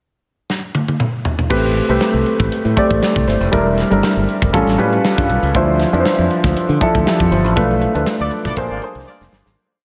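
An intimate baby grand piano with audible action noise and a subtle chorus pushes drop-2 chords, grace notes and short fills through A minor in this slick, bittersweet 1980s jazz-funk pop piece at 119 BPM with a light sixteenth-note swing, entering at 1.5 seconds together with a growly, agile fingered electric bass with muted ghost notes, over an up-front studio drum kit whose punchy kick and bright cymbals carry a crisp sixteenth-note groove and fills from 0.5 seconds, while a warm, tight horn section adds vibrato-laced octave punches from 8.2 seconds as the band accents and fades inside a dreamy, cathedral-soaked mix.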